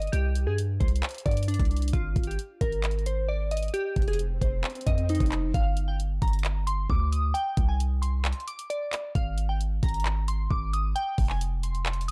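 A hard-hitting 808-style bass sits up front in this brooding, menacing trap excerpt, its punchy, heavy sine tone carrying a noise layer with a fast attack and decaying tail. The electronic trap drum kit shares the foreground in a half-time feel, with a knocking kick, bright hi-hats, handclaps and a tape-warm, produced character. Above them, glassy digital keys play the melody with a sine-based, fast-attack sound shaped by chorus, a low-pass filter sweep and digital delay. The chords move through Csus2, Absus2 and F5, shifting to Gm when a second section begins at 5.5 seconds. Just before that, an electronic swell enters in the background at 4.1 seconds. The digital ambience and dark production give the whole a shadowy, ominous weight.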